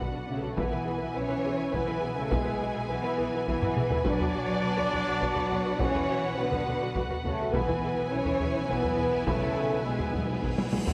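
This cinematic, epic orchestral film score in triple metre feels heroic and dark, and it is cut from a longer piece. A taiko ensemble struck with hard sticks plays throughout, adding a drum fill at 3.6 seconds and another at the very end. A double bass section holds a low B in the background, while a cello section supplies a smooth, even bass line. Mellow French horns and a clear, focused string section sustain chords that shift between B minor and E over B, as violas add expressive accompaniment and a second violin line with a soft attack sits under the distant, vibrato-rich main violin melody. Timpani with medium mallets enter at 7.5 seconds with a close, dry fill, and a huge, bright cymbal swell arrives at 10.3 seconds, all set in a moderate scoring-stage reverb that lends the lush strings a spacious depth.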